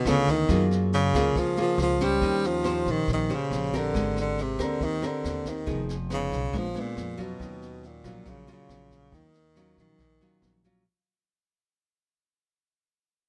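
A straight 4/4 bossa nova pulse at 139 BPM in Eb minor sets a wistful, intimate mood for this fading excerpt, where an up-front, close-miked tenor saxophone carries the melody with soft-attack vibrato over fingerpicked, full-bodied nylon-string guitar with audible finger squeak, a woody, thumpy pizzicato upright bass on gut strings, and a distant, roomy brush kit with high-tuned snare, rim click and boomy kick, in a dry mix moving through chords such as Gbmaj9, Eb13 and Ebm9.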